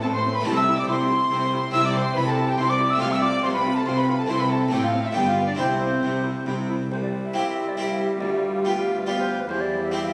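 A bright, airy wooden baroque flute carries the melody from the first moment, cut from a longer classical concerto movement in a baroque style with solo episodes, set in C major at 140 BPM in a straight 3/4 with a stormy, driving mood. Around it, a close, gut-strung violin section also plays a melody line in the same high register, while a second violin line sits in the background below, and a dark, nasal viola section fills in the accompaniment. A brilliant, full Flemish-style harpsichord with three sets of strings adds plucked accompaniment across its span, and rich cello and double bass sections, bowed in period style with light vibrato, anchor the bass. The harmony moves from Am/C through C, F/C, Am and G7 before settling on C, then passes G7/D and C/E in the closing stretch. The double bass drops out at 6.9 s, where a new section begins and the cellos carry the low end to the cut at 10.1 s. 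The sound sits in a wet concert hall reverb with a 1.8-second decay, captured on a phone in the room.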